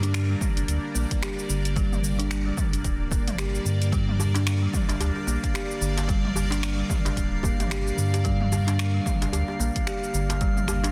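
A mystical, warm organic downtempo groove in G minor pentatonic at 111 BPM with a swung sixteenth feel opens on a Gm chord, where a bright, tense, string-like bowed drone with phaser and sidechain pumping, a woody, ringing kalimba playing arpeggios through digital delay, a round sine sub bass and an overdriven deep house kit of finger snaps, hi-hat, shaker and toms arrive together, with a punchy electronic kick joining at 0.4 seconds, a faint vintage djembe with metal rattles slipping into the background at 4.2 seconds, and a glassy, chorused harmonics texture drifting in at 4.6 seconds, all under a dense, heavily limited master with light digital ambience.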